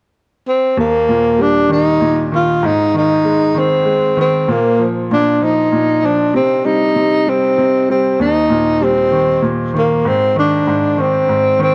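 A breathy tenor saxophone carries the melody from 0.5 seconds, its mellow, whispered tone shaded with vibrato, scooped notes and a touch of digital delay, sitting up front in an intimate, jazz-style solo. A bright upright piano with a woody, vintage character and short sustain joins at 0.8 seconds to accompany it through a heartfelt, swaying pop passage in 6/8 at 65 BPM in Eb major, moving through Eb, Ab, Bb5 and Cm. Cut from a longer piece, this excerpt has a dark production bathed in moderate plate reverb.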